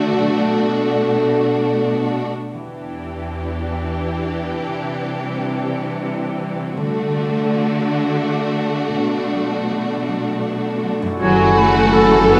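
A rubato lilt in 6/8 carries this bittersweet, longing passage of cinematic film score. Lush bowed violins sing an expressive vibrato melody over a second violin line, rich violas, focused cellos and a ringing harp, the whole orchestra bathed in a wet hall reverb, while mellow French horns hold chords at the opening and return near the close, and a bright cymbal swell and tam-tam enter at 6.8 s. At 11.2 s, marked by an ensemble accent, a pure, hollow flute, a distant oboe, a soft-edged clarinet and a smooth double bass section join for the brief final phrase.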